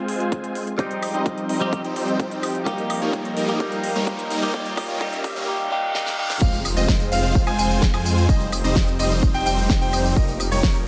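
Huge, bright supersaw chords pump with phaser and tape echo over a punchy, up-front electronic kick, a big-room kit with a huge snare and crisp hats, a thick, menacing detuned saw bass and a lush, warbling pad in the background, while a clean, compressed electric guitar plays accompaniment through a filter-swept build-up with very quiet riser, reverse cymbal and impact effects from 1.9 s, before the drop at 6.4 s brings natural baby grand piano arpeggios into this euphoric, anthemic 128 BPM festival progressive house excerpt in F minor.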